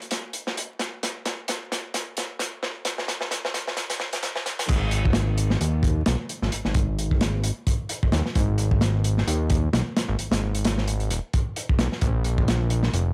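Breakbeat with a funky, gritty swagger opens on a crunchy, saturated small-room drum kit with a punchy kick, medium-tuned snare and dark cymbals, playing a build-up fill until a fat, detuned sawtooth analog bass with a filter pluck lands up front at 4.7 seconds for the drop, all set dry and close beneath a layer of vinyl crackle.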